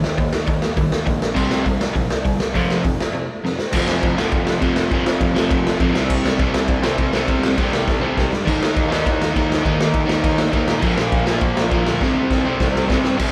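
Aggressive and raw, this fast punk rock cut has a band playing live in one room with light reverb, led by a crunchy, bright, double-tracked overdriven guitar riff sitting up front beside a raw garage drum kit whose punchy kick, medium-tuned snare, hi-hat, ride and crash carry a dark, rolled-off top in a stone room. A fuzzy, picked electric bass sits in the background, amped and overdriven. A short break at 3.1 seconds opens into the longer second section, with drum fills at 7.9 and 12.0 seconds.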